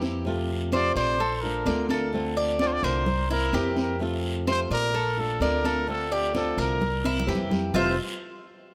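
A moderate plate reverb with a 2.9-second tail gives this short latin excerpt a soft, airy glow, while the congas sit close and dry. Rooted in Cuban son and guajira, the relaxed, warm groove moves at 128 BPM in a straight 4/4, in F major, cycling twice through F, Bbmaj7, Dm7 and C7 before settling on Fmaj7 at 7.7 seconds. Up front, a breathy, whispered trumpet sings the melody with vibrato and a soft attack in an intimate, pop-style solo, while a fingerpicked flamenco guitar supplies warm accompaniment, complete with audible finger squeak. A bright, metallic Cuban tres picks arpeggios on its double strings, some doubled at the octave, over a woody, dark upright bass played pizzicato on thumpy gut strings. High-tuned congas struck with hard hands have a thick skin, a raspy guiro scrapes faintly in a live room, and a fill at 7.0 seconds rounds off the passage.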